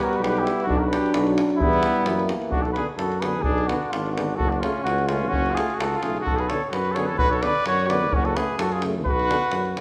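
Bittersweet yet fiery, this Balkan brass band passage moves at 129 BPM in a swung 2/4, centred on B dorian with a raised fourth, and is cut from a longer piece. A cup-muted cornet carries the melody with a veiled, soft tone and light vibrato, while a trumpet with a smooth top supplies a second line. Behind them, a clear French horn and a trombone sit distant and roomy in the background as accompaniment, and a mellow tuba enters at 0.2 seconds to anchor the bass. A tight, acoustic davul drives the percussion with a small-room sound. The brass phrasing is classical in style, and a short opening section gives way at 2.5 seconds to a longer passage that rocks between Bm and F#m, all bathed in a recital hall reverb.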